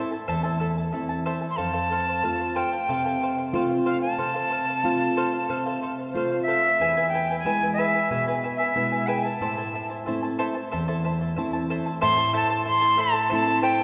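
Shimmering, fingerpicked double strings of charango and a dark, up-front classical nylon-string guitar with audible finger squeak open this melancholic, wistful Andean folk excerpt, joined at 1.5 seconds by an airy, reedy cane quena carrying the tongued, straight-toned melody over an Am–F–E–Am progression, all bathed in a long, wet church reverb.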